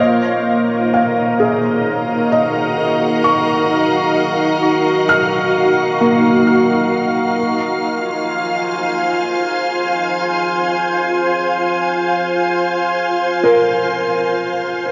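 Melancholic yet serene, this ambient piece in a slow, straight 4/4 drifts through a short stretch cut from a longer work. A soft, organ-like pad holds sustained chords throughout, its pure, detuned tone blending sine and triangle colours over a sub octave, with slow attacks and long releases that let it evolve gradually; ensemble chorus, built-in reverb and shimmer reverb give it a bright, up-front presence. Alongside it, a felt-muted upright piano plays mellow, intimate arpeggios for the full 14.9 seconds, its notes carried by delay and shimmer reverb. The harmony moves from Ebm9 to Fm7 at 7.4 seconds, keeping the mood suspended and wistful. A wet cathedral reverb with a 4.9-second decay places both parts in a vast, echoing space.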